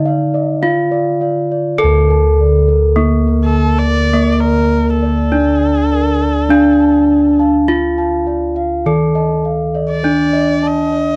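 Dry and close, with a light reverb and the feel of a 1970s studio, this short cut from a longer gamelan piece moves at a stately 51 BPM in 4/4 with a hypnotic, straight pulse in D pelog. Up front, a bright, ringing bronze metallophone struck with a horn mallet carries the melody, while in the background a set of bossed gongs with padded beaters anchors the bass in a round, beating, dark and smooth tone. A second metallophone played with padded disc mallets, set back in the mix, and a mellow set of bossed gongs placed up front weave soft arpeggios in a higher register, the gongs touched by a slapback echo. At 3.4 seconds a single bowed erhu enters with a second line, its expressive, warm voice close to the ear, colored by vibrato and portamento. The effect is a slow, shimmering bronze tapestry with a singing string voice woven through it.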